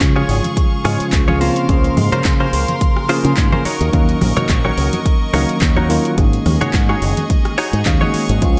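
Lightly reverberant digital ambience frames this sleek, cosmic nu-disco excerpt at 107 BPM with a gentle 16th-note swing, where a punchy, overdriven electronic kick sits up front over an overdriven pop kit of handclaps, metallic hi-hats and rim clicks, a bright, envelope-filtered fingered bass, a worn, slightly out-of-tune tine electric piano with analog delay, earthy chamber strings pumping under sidechain, a twangy clean electric guitar riff with chorus and delay entering at 0.2 seconds, and very quiet, soft-handed congas from 0.4 seconds, all moving through Db, Bbmadd9/Db, Ebm7 and Ab7sus4.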